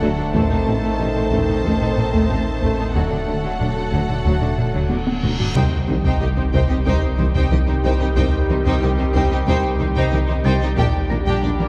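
Relentless and futuristic, this hybrid orchestral and electronic film-score excerpt sets a clear, lush violin melody over a second violin line with a smooth, even tone and a rich viola accompaniment, with sustained chords from tight trombones, mellow French horns and an evolving, warbling wavetable pad, soft round pluck arpeggios, a punchy sub bass alongside cellos, double basses and a distant tuba, heavy saturated taiko drums, a faint felt-muted upright piano texture, and an electronic reverse cymbal and sub drop leading to an impact at 5.6 seconds, set in a wet concert hall reverb.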